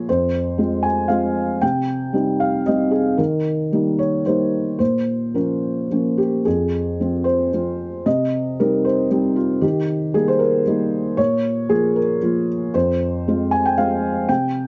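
In a loose, rubato three-beat feel, a solo felt-muted upright piano plays through a short four-chord cycle in F minor that repeats once, drawn from a longer neoclassical minimalist piece. The piano sounds soft, dark and boxy, sitting up front through close, detailed microphones with a light touch of reverb. The mood is intimate and wistful, and the passage closes at 14.7 seconds.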